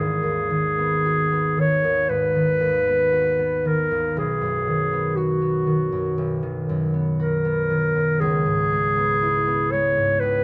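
Rubato phrasing stretches a slow pulse of about 59 BPM in 4/4, giving this impressionist classical duo a hazy, mysterious drift. A warm clarinet carries the melody between F#4 and C#5. It sounds distant and roomy yet sits up front as a solo voice in classical style. Beneath it, the concert harp, also up front, supplies fingerpicked accompaniment from G#1 to A#4, its acoustic strings ringing. The harmony in G# minor moves from G#m9 to Bmaj7 at 4.2 seconds and C#m7 at 8.2 seconds, with both parts sounding throughout this brief 10.4-second passage cut from a longer piece. Close, detailed microphones capture the pair, softened by light reverb.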